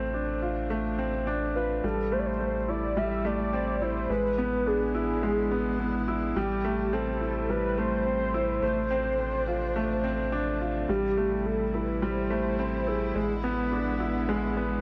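Set in a small, echoing room, this moving, melancholic piano and strings electronica excerpt in A minor at 106 BPM rests on a woody upright piano riff with delay sitting up front, a round, deep analog bass holding A1, and a dark, distant string quartet fading in with sustained bowed chords in the background, while a velvety, detuned sawtooth synth lead with chorus carries the melody from 1.6 to 13.4 seconds.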